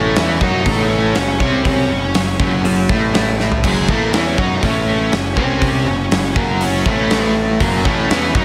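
A fuzzed, dark lead guitar sings its melody over a very quiet, twangy clean guitar arpeggio that stops at 3.6 seconds, while a compressed fuzz guitar and a tremolo-treated overdriven semi-hollow guitar hold riffs in the background, a growly, bright fuzz bass holds the low end, and a punchy, up-front rock drum kit enters at 0.2 seconds with a fill at 3.4 seconds, giving this restless, bittersweet 121 BPM quiet-loud alternative rock excerpt on F#5 a big arena sound in a moderate hall reverb.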